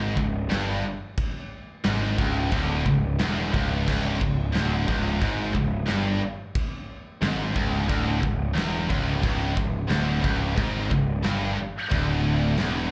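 Heavy metal at 89 BPM in 4/4, this aggressive, relentless clip sits on C#m in C# phrygian, cut from a longer piece and heard as a live gig through a club PA with light reverb and a dulled top end. Two heavy high-gain guitars, one very quiet and one with distortion and slapback echo, join a tight, double-tracked distorted guitar in the background to grind out a low riff, while a growly, fuzz-soaked picked electric bass with overdrive sits up front. A big-room acoustic drum kit enters at 0.2 seconds with a punchy kick, medium-tuned snare, crash and china cymbals, its sound dark and smooth.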